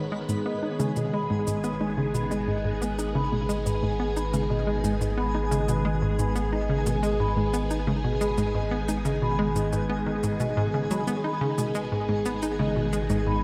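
Hypnotic and expansive, this short excerpt of ambient, sequencer-driven space music moves at 89 BPM in a straight 4/4, resting on a single G# minor chord throughout. A hollow, bouncy square-wave pluck with a detuned, noisy edge carries the riff from the start, thickened by chorus and an analog delay, while a round, deep analog bass holds G#1 beneath it. A vintage string machine sustains chords with a swirling, warbling character from its ensemble chorus and phaser. From 0.3 seconds a soft-mallet vibraphone adds mellow, ringing arpeggios through analog delay, and electronic toms and shaker join at the same moment, also echoing through delay. Far in the background, a twinkling granular texture with an octave-up shimmer hangs in its own reverb, and the whole echo-heavy mix sits in a moderate plate reverb.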